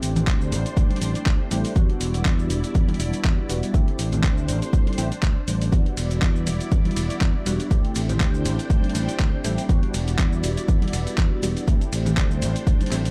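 A punchy electronic kick sits up front in this filtered disco house cut, driving a funky, groovy 4/4 pulse at 121 BPM with a 55% swing on the sixteenths. Beneath it, an overdriven fingered electric bass growls bright and direct between E1 and E2, while a dusty soul sampler-style kit adds compressed, gritty handclaps, hi-hat, ride cymbal and shaker, its hats and cymbals pumping against the sidechain. A detuned sawtooth polysynth comps with a fast-attack filter pluck and a moving notch, its mellow tone colored by chorus and phaser and breathing with sidechain pumping. Behind it, a lush vintage string machine holds slow-attack chords with a sub octave and ensemble chorus, pumping in time, as the harmony alternates between D7sus4 and Em7 roughly every two seconds. Very quiet maracas and congas ring softly from a small room, and the whole passage, cut from a longer piece, carries a dry, gritty hardware character with a touch of digital ambience.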